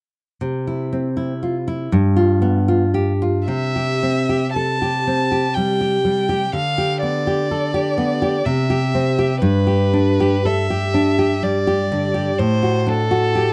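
A full-bodied nylon-string guitar opens at 0.4 s, fingerpicked up front with audible finger squeak as it lays down a rubato accompaniment in 3/4 around 54-64 BPM in C major. At 3.5 s a single bowed violin joins to carry the melody, its rich, focused tone shaded with vibrato and sitting close in the mix. The result is a warm, lyrical romantic duo, cut from a longer piece, captured in a dry, intimate 1970s-style studio with small room ambience.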